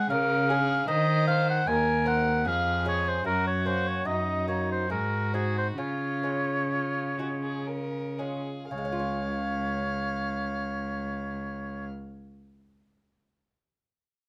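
Close, detailed microphones and a light reverb give this short cut from a longer baroque-style sonata movement an intimate, clear sound. In a flowing 3/4 at 57-77 BPM in Db major, the music feels serene, easing into a slowdown from 2.1 to 8.7 seconds before a new section begins. A distant, nasal violin with a gut-string, period-style tone carries the melody, bowed by one player. An up-front oboe with vibrato and a smooth top sings the second line with a punchy presence. Underneath, a dark, reedy cello holds the bass, while a delicate fingerpicked lute with double gut strings, some doubled at the octave, sits in the background as accompaniment. The harmony moves through Db, Ebm6, Gb and Ab7 before settling back on Db.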